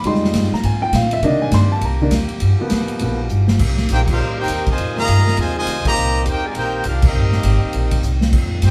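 A sultry big band swing excerpt opens with an intimate grand piano in the lead, its action noise audible and its notes short, over soft-attack saxophone chords in the background, woody pizzicato upright bass and an airy drum kit with dark cymbals and a punchy kick. After a drum fill at 3.3 s, a brilliant trumpet section takes the melody at 3.9 s with light vibrato, while a tight trombone section adds a second line behind it and the full band hits accents. The whole group plays live in one room, with a wet studio ambience.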